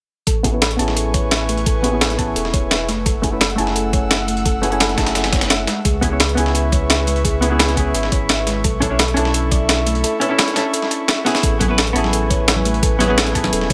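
Liquid drum and bass with a lush, uplifting mood, this excerpt moves through a straight four-beat groove over an Amaj9, F#m7, C#m7 and Bm11 progression that returns to Amaj9. A dark, clean hollow-body jazz guitar sits up front, its fingered, compressed chords passing through a low-pass filter sweep and digital delay, while an airy, breathy pad with a detuned, chorused shimmer sustains chords beneath it. A round, tine-like thumb-piano-style synth pluck ripples arpeggios in the background, trailing dub echo, and a deep sine sub bass anchors the low end with a mellow, rounded tone. The drums layer a gritty, up-front breakbeat kit with a high-tuned snare, a dustier soul kit re-recorded in a small room and tucked behind, and a knocking, overdriven electronic kick. A drum fill arrives at 11.3 seconds, and soft-handed congas slip in at 11.6 seconds, all wrapped in a digital ambience.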